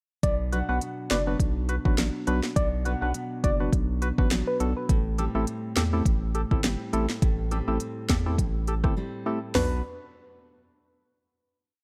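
A dark, warm digital ambience wraps this short, bouncy and tough dancehall piece, a single chorus that moves from Bm to Am7 and back before closing on a final Bm chord at 9.6 seconds. The electronic afro-pop drum kit sits up front with a deep kick, sharp snare, smooth hats, rim clicks and toms, playing a dancehall beat in which a syncopated kick is answered by the snare, with a short break near the end. A saturated sub bass, thick and sine-based with a fast attack, holds a sustained, syncopated low line with slides, also placed up front. A bright, full-bodied nylon-string guitar fingerpicks sparse arpeggios in a deep classical vein, while a hollow, organ-like percussive stab adds mellow off-beat chords in close voicing with chorus. A gentle, round FM synth lead with a keys-like, decaying tone, vibrato, chorus and slapback echo carries the syncopated hook until 4.9 seconds, then returns briefly at 9.5 seconds as the final chord arrives.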